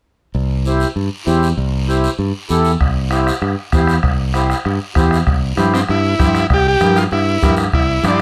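A light reverb gives this short cumbia cut a touch of room, with the lead instruments up front and the hand percussion set farther back. At a brisk 195 BPM in a straight 4/4, the groove feels danceable and passionate, resting on a C chord. From 0.3 seconds a bright, direct fingered electric bass carries the low end while a raspy guiro scrapes along from a distant, large-room position. A reedy, airy accordion soon fills in the accompaniment with slow beating in its tone, and a soft-beatered bombo joins at 2.8 seconds, also sounding distant. In the second section, bright, medium-tuned congas with a thin skin sit in the background, and at 5.7 seconds a vintage overdriven combo organ takes the melody, buzzy and up front with heavy vibrato.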